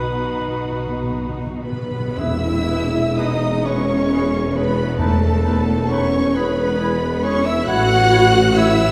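A lush violin section sings the high, expressive melody of this lyrical, slow romantic orchestral movement in E major, swaying in a rubato 6/8 at 36-45 BPM over a soft-attacked second violin line, a distant oboe, violas with portamento, focused cellos and smooth, even double basses, while close, dry timpani open with a fill and stop at 6.3 seconds, an airy, hollow flute group, very quiet French horns and a mellow trumpet join at 1.6 seconds, and clarinet, trombones, tuba and a faint tam-tam arrive with a full-band accent at 2.2 seconds, the whole orchestra heard from further back in a reverberant scoring-stage space.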